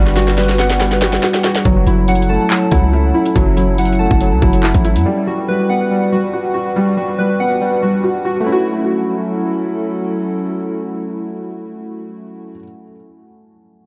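Ominous and cold, this half-time drill excerpt at 141 BPM in F# phrygian opens with a drum fill from an electronic kit of hard-clipped kick, sharp snare, metallic hats and handclaps, alongside a punchy, heavy 808-style bass, and both stop at 5.1 seconds. Over Gmaj7 and F#m7 chords, warbling lo-fi synth keys with square and sawtooth tones and a filter sweep play up-front arpeggios through chorus and analog delay, while a dark, detuned tape-like pad sustains chords in the background with chorus and reverb. A soft, felt-muted upright piano carries the accompaniment through analog delay until 13.9 seconds, all in a dry, echo-heavy mix.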